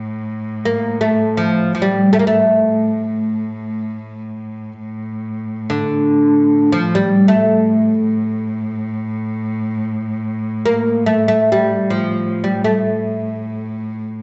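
The recording sounds dark and roomy, as if heard in a recital hall with a lush 1.2-second reverb, and its highest frequencies stop at about 8.0 kHz. This melancholic, soulful excerpt from a longer Arabic maqam piece unfolds in free time, tuned to A4 = 439 Hz. A single bowed cello opens at 0.0 s, holding a steady drone on A2 that stays smooth, even and close, with vibrato giving it a rich glow. At 0.7 s the oud enters up front as the melody instrument, louder than the cello and confined to the span from D3 to Bb3. Its plectrum-plucked, fretless double strings give a woody, deep acoustic voice, and it carries the line until 14.1 s, just before the drone closes the passage.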